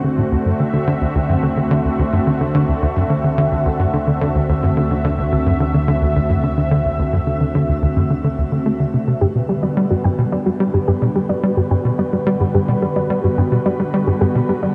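A lush, thick unison pad and a tight, punchy sequencer bass open this luminous, cosmic piece of ambient, sequencer-driven space music, cut from a longer work and set at 108 BPM in 4/4 with a straight feel in G major. The pad holds sustained, airy chords treated with chorus, phaser and shimmer reverb, while the detuned, sawtooth-edged bass drives a dark riff up front, colored by lush chorus and tape echo. At 1.4 s an analog drone enters beneath them, evolving and warbling with a vintage, pulse-width-modulated tone that stays in the background until 9.2 s. At that point the harmony moves from D7 to Gmaj7, and a soft, round pluck takes up gentle arpeggios with chorus, tape echo and shimmer reverb. The whole sits in a vast, echoing space with a huge, wet reverb and the grain of cassette tape.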